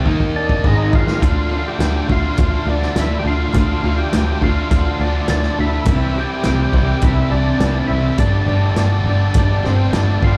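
Heard through a club PA with the room's ambience around it and little reverb, this excerpt from a longer classic rock piece has a swaggering, sunny mood at 103 BPM in a straight 4/4. A vintage drum kit opens with a fill at 0.1 seconds, its punchy kick and medium-tuned snare sitting mid-forward with a rolled-off top. A dark, round picked electric bass sits up front, while two overdriven guitars play riffs: one bright with slapback echo, the other a lo-fi garage tone with its own overdrive and slapback set further back. From 0.4 seconds a thick, gritty tonewheel organ carries the melody with percussive third-harmonic attack, chorus vibrato, slapback echo and digital delay. At 1.2 seconds a very quiet, boxy acoustic archtop guitar joins in accompaniment, with finger squeak audible, as the harmony moves from Dm to C and then Gsus2.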